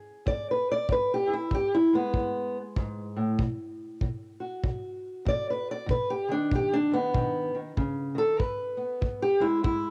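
A boxy, woody fingerpicked parlour steel-string acoustic guitar with old strings opens this soulful, swaggering acoustic country blues excerpt at 96 BPM in E major, swinging its melody up front through cassette tape and plate reverb, while a dark, punchy brushed kick drum joins at 0.3 seconds as the chords move from E to B at 3.4 seconds and back to E at 8.4 seconds in a lightly reverberant home-cassette sound.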